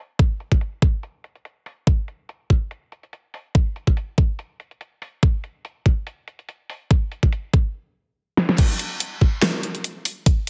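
A knocking, up-front electronic kick and a layered, tape-toned dubstep kit of huge snare, handclaps, bright hi-hats and crash cymbal, with the snare, hats and crash run through low-pass filters, open this aggressive, menacing half-time dubstep cut at 143 BPM with a light 16th-note swing, all set in a heavily compressed, radio-like digital ambience, before a stop at 7.7 s and a drum fill at 8.4 s lead into the drop at 8.6 s.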